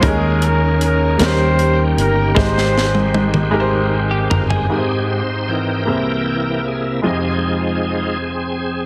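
A bright, shouting tonewheel organ, lightly overdriven through a fast rotary speaker with chorus vibrato, holds sustained chords and then takes a solo from 4.7 seconds in this hopeful, soulful slow gospel fragment in 6/8, over a clear baby grand piano with short sustain, while a distant, roomy horn section carries the melody until 3.5 seconds, a dark, round fingered electric bass and a tight funk drum kit with a high-tuned snare anchor the opening with a fill from 2.4 seconds, and a clean picked electric guitar with analog chorus adds a brief second line, set in a small room with light reverb and a heavily compressed radio sound.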